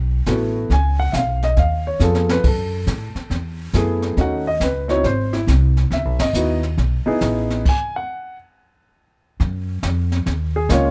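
An intimate grand piano with audible action noise carries the melody in this cool, late-night swinging jazz piano trio in C# minor at 138 BPM, set over a woody, thumpy pizzicato upright bass and a brushed drum kit with dark cymbals, a high-tuned snare and a boomy kick, with a drum fill at 2.0 seconds, a band accent at 6.1 seconds and a full stop from 7.7 to 9.4 seconds, heard through close, detailed microphones with little reverb.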